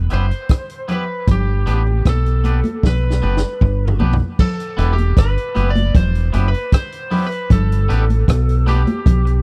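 A dry, close studio sound with a small room around it gives this short cut of roots reggae a 1970s character, meditative and laid-back in a straight 4/4 feel. The vintage drum kit sits up front with a punchy kick, a medium-tuned snare, rim clicks, hi-hat, crash and toms, and a drum fill runs from 2.8 to 4.4 seconds before the second section. Beneath it, a deep, round fingered electric bass with a dark tone holds the low end, also up front and loud in the mix. Two electric guitars sit further back, both carrying dub echo: a clean, scooped, twangy accompaniment part and a bright, slightly broken-up, compressed lead that carries the melody. High-tuned congas with a thin skin and hard hands come in at 0.9 seconds, adding a band-limited percussive layer as the harmony moves between E minor and G.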